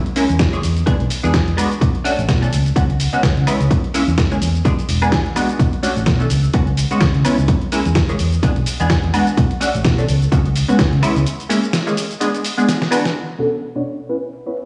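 A bright, detuned polysynth sits up front, playing punchy, funky sawtooth-and-pulse chords with a plucky filtered attack, chorus, phaser and sidechain pumping in this sensual, groovy filtered disco house piece at 127 BPM in B dorian, with a 16th-note swing. Beneath it sit a foam-muted fingered electric bass with tube saturation and pumping and a tape-warm, punchy electronic kick re-recorded in a large room. A gritty, compressed sampler-style soul kit adds a filtered snare, hi-hat, cabasa, woodblock and crash. The kick drops out at 10.9 seconds and the bass at 11.2, opening a break with a drum fill, and from 13.2 seconds a filter sweep runs over the drums and the synth, all in a stone-room echo chamber reverb.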